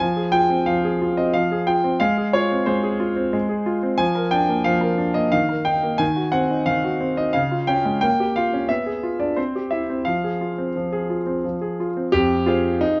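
A clear concert grand piano plays alone from 0.0 to 13.0 s in this dramatic, elegant classical-period sonatina passage in triple time, cut from a longer piece, its smooth, vintage tone sitting up front with a deep bass, close, detailed microphones and light reverb as the minor-key harmony moves through darker colours and a diminished chord before returning home at 10.1 s.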